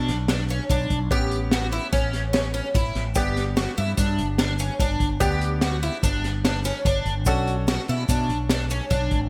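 Intricate and driving, this progressive instrumental in 5/4 sets shimmering, octave-doubled twelve-string acoustic guitar arpeggios with analog chorus against a round, up-front fretless bass and a crunchy, gritty breakbeat kit with a high-tuned snare and gated reverb, while a brilliant baby grand piano with audible action noise sits in the background and a grainy tube shaker joins at 3.1 seconds, framed by a bright 1980s-style digital production.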